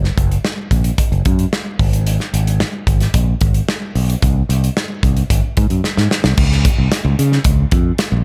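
A bright, punchy fingered electric bass sits up front, its direct, amped tone ranging from Gb1 to Db3 across this short cut from a slick, bittersweet piece of polished 1980s jazz-funk pop at 111 BPM in a straight 4/4. A modern acoustic drum kit plays alongside, also up front, with a punchy kick, a medium-tuned snare, hi-hat and crash cymbal in a pumping studio room. A drum fill from 5.8 to 6.4 seconds leads into a new section, all in a dry mix.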